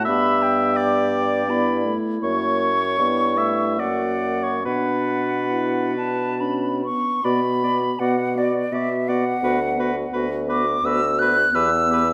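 Classical slow romantic movement for wind quintet in a rubato 3/4, melancholic and yearning, in which an airy silver flute with vibrato and a soft attack carries the melody up front over a warm oboe second line, a clear, vintage-toned clarinet sitting back in the accompaniment, a mellow, smooth-topped French horn and a bassoon bass with light vibrato, all set in a moderate scoring-stage reverb in this fragment cut from a longer piece.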